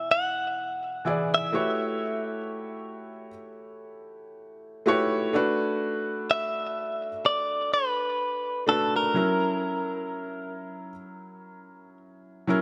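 A clean electric guitar, recorded direct and picked with a compressed, up-front tone, carries the melody through this brief, late-night R&B passage, sitting in a high middle register. Beneath it, a felt-muted upright piano supplies soft, mellow accompaniment whose thin felt gives it an intimate, natural character close to the listener. The slow groove has a gentle swing on the sixteenths, and the harmony moves from E7 to A13 at 1.5 seconds, settling onto D6/A at 5.3 seconds before turning to F#7 at 9.1 seconds. The guitar drops out at 12.0 seconds, leaving the piano to ring on alone until the fragment cuts off. A light reverb wraps the pair in a moody, warm glow.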